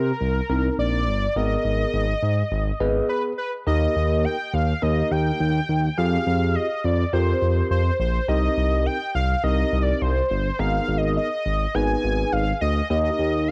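A thick, bold unison lead with a bright, detuned sawtooth edge and vibrato carries the melody up front in this wistful yet upbeat synth-pop excerpt, backed by a smooth, mellow synth bass that sits equally forward. A clean tine electric piano enters at 0.5 seconds, colored by phaser and cassette-tape grit, and plays a fill from 2.5 seconds into a short break before the second section begins at 3.7 seconds. Chords move through Cm7, Abmadd9, Eb and Fmadd9, and the whole take has the light reverb and homespun character of a cassette home recording.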